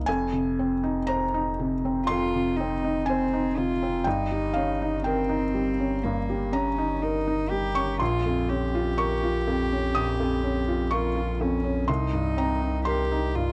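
Reflective and melancholic, this brief excerpt of neoclassical piano and strings drifts at a slow 61 BPM in 4/4 with a rubato feel, set in F minor. A felt-muted upright piano carries the accompaniment from the start, its mellow, intimate tone up front with audible action noise and short sustain, spanning Bb1 to Eb6. Underneath, a saturated sub bass holds deep, thick, sustained low notes between F1 and C2 with a fast attack. At 2.1 seconds a single bowed cello enters as a second line, played sul tasto with a soft attack and a nasal, pure, floating quality, sitting close and up front in the range Bb3 to G4. The harmony moves through Fm7, Eb7/G, Bbmadd9 and Cm7, captured in a dry, close studio sound in the 1970s style with little reverb.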